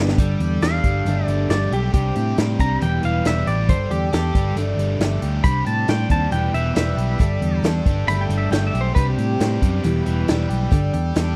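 A dry, close 1970s-style studio sound frames this open-road folk rock and heartland rock excerpt, where a twangy pedal steel guitar with slapback echo carries the melody from 0.6 seconds over a punchy vintage drum kit that opens with a fill, up-front amped electric bass, a biting double-tracked overdriven guitar riff, a full-bodied jumbo acoustic guitar in the background and reedy sustained accordion chords tucked behind.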